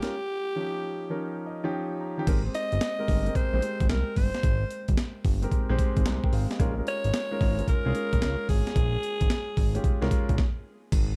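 A raspy, close-miked alto saxophone carries the solo melody in this upbeat, flirty new jack swing R&B excerpt in A-flat major at 111 BPM with swung sixteenths, over warm grand piano chords moving from Eb9 to Abmaj9 and Bbm7 and an up-front, compressed breakbeat kit with a thumpy kick, high-tuned snare, hi-hat, tambourine and crash, as an opening break with a piano fill from 1.2 seconds gives way at 2.3 seconds to a fat, detuned sawtooth bass with a filter sweep, before everything but the drums and bass drops out in a stop at 10.4 seconds, all in a dark, dry production.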